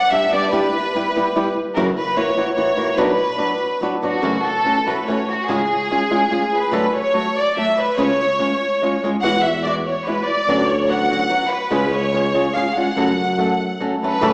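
Heard from further back in a recital hall with a 1.5-second reverb tail and a small-speaker quality, this passionate, dramatic mariachi passage in triple metre is cut from a longer piece. A bowed violin section carries the melody with a warm, smooth ensemble tone and light vibrato. Beneath it, an acoustic flamenco guitar fingerpicks the accompaniment on fresh-sounding strings. A mellow solo tuba with a smooth top supplies the bass in a classical style, appearing briefly near the start and returning at 9.2 s. The harmony moves to a new tonal centre around 4.2 s and winds through colourful chords before settling on a minor close.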